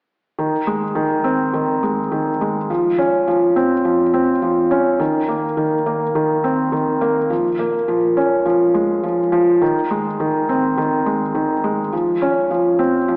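A felt-muted upright piano enters at 0.4 s and plays alone until 13.2 s, its notes sitting between Eb3 and Db4 in the low-middle register. This is a short electronica excerpt cut from a longer piece, moving at 104 BPM in a straight 4/4 feel. The mood is cinematic and moving. The piano tone is soft, mellow and intimate, placed up front so the muted hammers feel close to the ear. The sound is bathed in a recital hall reverb with a 1.5-second decay and filtered through an AM radio character.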